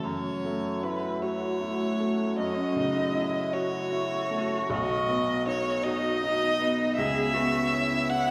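A slow, rubato sway in 6/8 carries this fragile, melancholic neoclassical fragment for piano and strings, cut from a longer piece. A bright, woody upright piano sits up front with a polished, long-sustaining accompaniment that spans deep bass notes to the middle register. A single bowed violin, also up front, sings the melody with focused vibrato and a smooth top, while a lone cello adds a rich, even second line with vibrato from further back. Beneath them, a warbling, lo-fi pad built from detuned sawtooth and triangle tones holds mellow, nostalgic chords with a slow attack, long release, chorus and its own reverb. The whole ensemble plays throughout the 8.3 seconds, moving from F#m7 to B at 4.7 seconds and on to C#m7, all bathed in the wet, spacious reverb of a church or concert hall.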